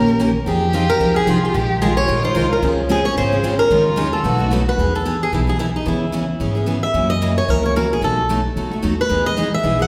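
A boxy, up-front swing-style acoustic guitar carries the melody from 0.7 s in this lively, playful slice of jazz manouche at 222 BPM in 4/4. A full-bodied jumbo steel-string guitar and a woody, growly pizzicato upright bass drive the accompaniment throughout, while a parlour guitar with audible finger squeak sits in the background. A bowed violin adds an expressive second line with vibrato and portamento until 4.6 s, before the harmony settles into E major at 4.8 s, all bathed in the wet reverb of a recital hall.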